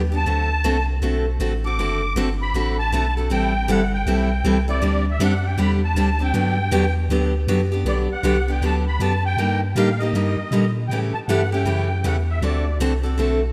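Playful and charming, this short excerpt from a longer piece is acoustic string swing in the jazz manouche style, moving at 158 BPM in 4/4 with a swung eighth-note feel in G major. A punchy sub bass sits up front with a deep, sine-like tone and a pitch-drop attack that sustains into mellow notes. Beside it, a picked steel-string acoustic guitar carries the accompaniment, bright and close with audible finger squeak. The musette accordion takes the melody high in its range, its reedy, shimmering voice carrying the wet detuning of musette tuning and sitting mid-forward in the balance. The harmony travels through chords such as D7, Am7, Gmaj7 and Ebmaj7/G before settling on D6 near 12.4 seconds, with a second section arriving at 7.9 seconds. A lush hall reverb surrounds the parts, and the rough, homespun mix gives it the feel of a demo.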